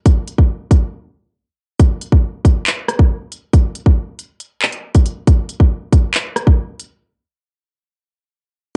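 Heard through a dry, dull home cassette recording with its top end cut off at 11.0 kHz, this short cut from a longer hip hop track has a dark, menacing mood at 138 BPM in 4/4 with a half-time feel. The only part is an electronic drill drum kit placed up front, built from a hard-clipped kick, crisp hi-hats, handclaps and rim clicks, with a cassette-tape grit and the character of a kit re-recorded in a large room. It plays from 0.1 to 6.9 seconds, with a brief break from 0.9 to 1.8 seconds, and drops out for a closing break from 7.0 seconds.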